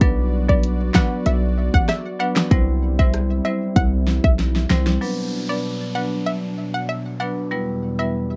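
A straight, bouncy dancehall groove in 4/4 drives this hypnotic excerpt, with an up-front pop drum kit of punchy kick, fat snare, handclaps, hi-hat and rim click, plus a heavy, hard-hitting 808-style bass, both dropping out at 5.0 s after a drum fill. Bright, percussive marimba struck with hard mallets and a smooth, warbling vintage analog pad with subtle chorus and sidechain pumping hold the chords over Bm, C and Em. From 0.5 s a round, full-bodied analog pluck carries the mellow melody through chorus and digital delay, while a faint electronic downlifter sweeps in at 5.0 s in the dry, close-sounding mix.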